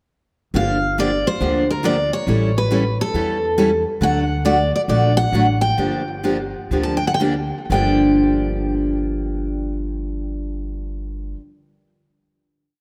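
A dreamy, reverb-soaked mix bathes this short, complete piece of acoustic string swing in the long tail of a wet plate, giving its G minor jazz manouche a bittersweet yet virtuosic air. Played in 4/4 at 118 to 139 BPM with a lilting swung eighth-note feel, it moves from Gm7 through A7 and D before returning to Gm7, slowing down from 4.0 to 7.7 seconds and closing on a held final chord from 7.7 seconds. Up front, a bright, full-bodied dreadnought steel-string guitar with fresh strings carries a motif-based melody of song-like phrases high in its range, lightly colored by subtle chorus and analog delay. A second picked steel-string guitar, a concert model, supplies four-to-the-bar rhythm with short, accented strokes on two and four. Beneath them, a woody, thumpy gut-string upright bass plays two-beat root-and-fifth lines with walk-ups, its pizzicato tone sitting close and present in the mix.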